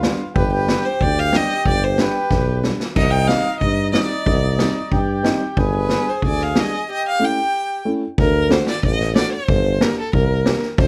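A clear, focused violin carries the melody up front, a single bowed player singing with vibrato over this bittersweet, soulful klezmer piece cut from a longer performance. It moves at 92 BPM in a straight 2/4, set in G phrygian dominant, with the chords moving from G to Cm and back before touching A7. Beneath it, a reedy, airy accordion plays a mellow second line until 7.8 seconds. A dark, woody upright piano with audible action noise and short sustain comps alongside, while a warm tuba anchors the bass with vibrato and scooped notes in a jazz style. The street-band drum kit sits up front with a boomy kick, medium-tuned snare and dark cymbals, and it plays a fill around 2.3 seconds. At 8.2 seconds the music shifts to a new passage over D and Gm, all captured with close, detailed microphones and light reverb.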